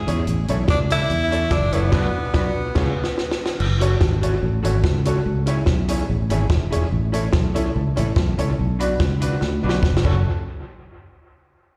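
An edgy, close-miked tenor saxophone carries the melody at the start of this mischievous, driving ska excerpt in F# minor, sounding from 0.7 to 3.4 seconds with dub and slapback echo on its punchy tone. Underneath, a round, foam-muted fingered electric bass sits up front, while a compact cocktail drum kit with a high-tuned snare, punchy kick and dark cymbals keeps a straight 4/4 pulse at 144 BPM. A clean, picked hollow-body jazz guitar supplies dark accompaniment, and a jangly, metallic tack piano adds bright stabs, both treated with slapback echo. The band hits an accent and the drums play a fill just before the harmony shifts from a passage over A, Bm and C# into a longer stretch moving through F#m, C#m, A and Bm, with another drum fill near 9.4 seconds before the chords drop away at 10.2 seconds. It sounds like a live gig heard through the venue's PA, with a light recital-hall reverb around the band.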